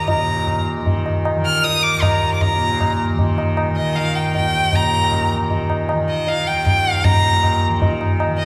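A clear, focused bowed violin with vibrato sings the melody up front in raga hamsadhwani in Eb, over a softly plucked, buzzing tanpura drone and high-tuned, close, dry tabla, in a devotional, meditative Hindustani excerpt at 155 BPM in 3/4, cut from a longer piece and bathed in the long, wet reverb of a church.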